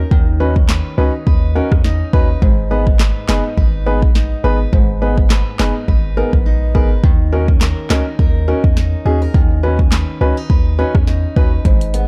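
A swung 104 BPM dancehall groove in G# minor, hypnotic and tough, rides on an up-front electronic afro-pop kit with a deep kick, sharp snare, metallic hats, rim clicks and handclaps over a boomy, sine-toned 808-style bass, while a mellow baby grand piano with long sustain accompanies and adds a fill at 1.3 seconds and a boxy, picked old ladder-braced acoustic guitar plays arpeggios through tape echo, all moving from Badd9 to G#m to D#m7 and back to Badd9 in a dark, small-room mix.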